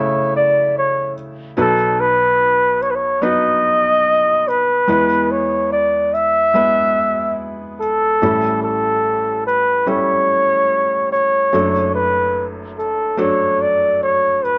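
Acoustic folk-pop ballad, intimate and tender, in which a breathy, mellow flugelhorn sits up front with light vibrato, scooped notes and a jazz-style character bathed in plate reverb, while a felt-muted upright piano accompanies throughout with soft, thin-felt tones and audible action noise in a moderate studio room.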